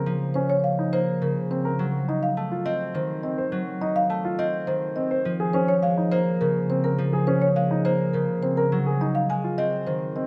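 A woody marimba carries the melody from 0.3 seconds in this hypnotic, meditative fragment of minimalist classical pattern music in 3/4, cut from a longer piece. Beneath it, an up-front concert harp rings out a bright, fingerpicked accompaniment, while a concert grand piano with a natural, deep-bass tone adds softer arpeggios. A moderate scoring-stage reverb surrounds the close, detailed sound as the harmony moves from Bbmadd9 through F7b9 and Bbm9 to Ab7.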